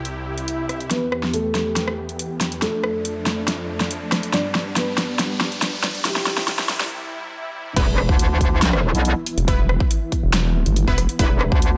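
A metallic, saturated wobble bass slams in at the drop at 7.8 seconds alongside a punchy overdriven kick, soon joined at 9.4 seconds by a nasal, vowel-sweeping second wobble bass, while orchestra-hit-like sawtooth stabs ring out with reverb and delay. Before that, this aggressive, heavy half-time wobble dubstep cut builds from a soft felt-muted upright piano melody with audible action noise and lush, pumping supersaw chords, both filter-swept, over a big-room drum kit with a huge overdriven snare and a drum fill. Background swells, a riser and an impact frame the build-up, the brief break and the drop.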